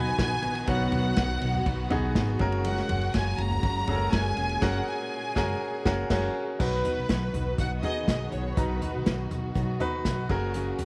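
A straight 4/4 groove from an unplugged drum kit played with bundle sticks, dark and tight in a small room, and a woody, thumpy pizzicato upright bass drive this warm, anthemic piano-driven pop passage, where a clear, up-front grand piano carries the accompaniment, a full-bodied picked jumbo acoustic guitar plays a riff in the background, a lush bowed violin section carries the vibrato-rich melody until 9.1 seconds over sustained chords from an expressive string section with portamento, and the band hits an accent from 4.6 to 6.6 seconds under light studio reverb.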